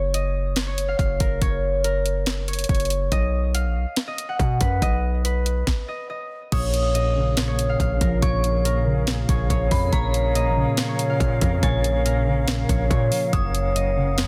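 Hip hop trap in a menacing, hard-hitting half-time feel, opening on an up-front concert harp with ringing, fingerpicked tone and tape echo over a punchy, heavy 808-style bass and a trap kit with knocking kick, sharp snare and bright hats, all halting in a stop from 5.7 to 6.5 seconds. At 6.5 seconds the arrangement thickens as soft, round electric-piano-like synth keys with chorus and phaser, airy flute-section chords with vibrato and a hollow edge, and an eerie, inharmonic detuned synth bell with chorus, phaser and tape echo join the harp, bass and drums. The mix sits in digital ambience with a dense, heavily limited modern master, and the recording is cut from a longer piece.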